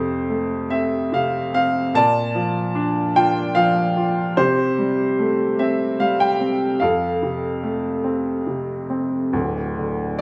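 Classical solo piano in F major, this tender, peaceful fragment of a longer piece moves at a lyrical, rubato 73 BPM in 3/4 time. An upright piano with a woody, vintage tone and long sustain sits up front, spanning low D1 up to A5 as the harmony passes from F through Bbmaj7 and Am7/C before settling back on F. A moderate recital hall reverb adds gentle space around the clear, smooth playing until the excerpt ends at about 10.2 seconds.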